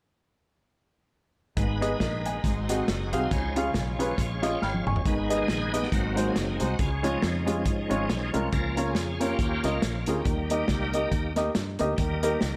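A swung 138 BPM groove in 4/4 drives this fervent, soulful uptempo gospel excerpt in G# harmonic minor, with a punchy, up-front soul kit and a round, foam-muted fingered bass anchoring an intimate baby grand piano whose action noise is audible. A bright, shouting tonewheel organ with key click and slow rotary speaker holds chords while a lush, very quiet bowed string section shades the opening until 5.0 seconds. Piano and organ fill from 4.2 seconds, with the drums joining the fill at 4.6, leading into 5.1 seconds, where the organ takes over with a solo that runs to the end.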